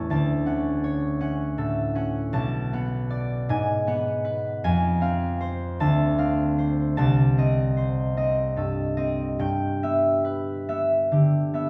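A wet stone room lends the recording a 1.6-second tail of reverb and a sense of listening from further back in the space, even as the concert harp itself sits up front. This is a peaceful, graceful classical piece for solo harp, cut from a longer work and lasting 11.7 seconds. The fingerpicked strings have a ringing, warm acoustic tone that spans the instrument from its deep low register up into its bright upper range. Set in 6/8 and played with free rubato, the phrase drifts unhurriedly. Its harmony wanders through colorful chords such as Dmaj7, Abm7 and Fm before coming to rest on G6 at 9.4 seconds.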